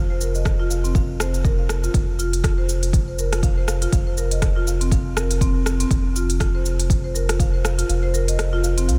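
Afro house with a hypnotic, spiritual mood, cut from a longer piece, built on a dark, smooth marimba playing arpeggios through analog delay and sidechain pumping, over a round, up-front analog bass with a filter sweep that pumps in the same way. A smooth-hatted afro-pop kit of hi-hat, rim click and shaker enters at 0.2 seconds, and a deep, tape-warm electronic kick joins at 0.5 seconds, both set in studio reverb. The kick drops out at 7.9 seconds, leaving the marimba, bass and percussion to carry the close of this dry mix.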